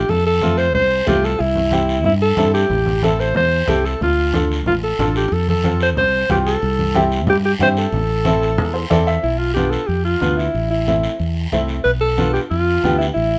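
A smooth-topped alto saxophone with vibrato leads up front over a dark, round fingered electric bass from the first moment of this driving, danceable cumbia cut from a longer piece, joined by a raspy guiro and bright, low-tuned congas sitting in the background, while a woody, slightly detuned upright piano adds short-sustain accompaniment and a fill at 8.6 s before the second section arrives at 9.2 s, in a light reverb.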